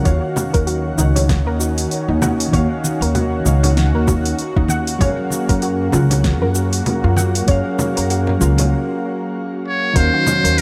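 A loose 16th-note swing rolls through this sunny, warm sunset chillout excerpt in 4/4. The electronic kick is soft and overdriven, and the smooth R&B kit adds a fat snare, metallic hi-hats, cabasa and congas, with its own grit and a touch of studio ambience. A separate set of bright, vintage congas sits in the background with hard hands until 8.7 s. The upright bass stands up front, woody and pizzicato on steel strings, anchoring the harmony as it moves from Ebm7 to Gbmaj7. Gentle, full-bodied electric-piano-like synth keys comp through a dark, chorused, low-pass-filtered tone with delay and shimmer reverb, while a lush, detuned sawtooth pad holds thick, warbling chords. A round, plucked synth spins arpeggios through delay and shimmer, and during a short break a brilliant, buzzy trumpet with a metal mute steps forward at 9.7 s for a brief jazz-style solo phrase.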